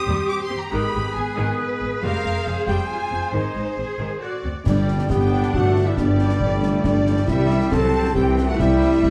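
This triumphant, heroic passage from an adventure film score opens at once on strings, woodwinds and horns in 3/4 at 138 BPM, with a lush, vibrato-rich violin section carrying the melody over dark, sustained French horn chords. Around it, a second violin section, a large airy flute ensemble, a clear solo oboe and a clarinet play secondary lines in the background, while violas fill in the accompaniment and cellos and woody, close double basses hold the bass. The opening harmony moves through chords such as Abm and Fmadd9 before the oboe drops out at 4.4 s. At 4.7 s the music settles into G major: tight, roomy trumpet stabs arrive, a very quiet tuba deepens the low end, and timpani sound briefly on G, while snare drum, bright clash cymbals and concert bass drum join from behind the orchestra. The recording sits in a moderate scoring-stage reverb with a dark, warm production, and it is cut from a longer piece.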